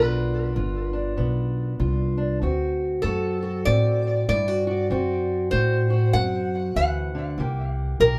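The recording sounds as if heard from further back in a small room, with a wet reverb around the players. This short cut from a longer piece is rollicking, gritty acoustic country blues in 4/4 at 97 BPM, with a swung eighth-note feel. A metal-body resonator guitar carries the melody with a slide and fingerpicks, its bright, nasal, metallic tone sitting up front and touched by tape echo. Beneath it, a fingerpicked steel-string parlour guitar supplies a dark, boxy accompaniment, while a pizzicato upright bass on gut strings adds a woody, thumpy low end. All three play together from 0.0 to 8.2 seconds, moving from G7 to D7 at 2.4 seconds and arriving on C7 at 7.4 seconds.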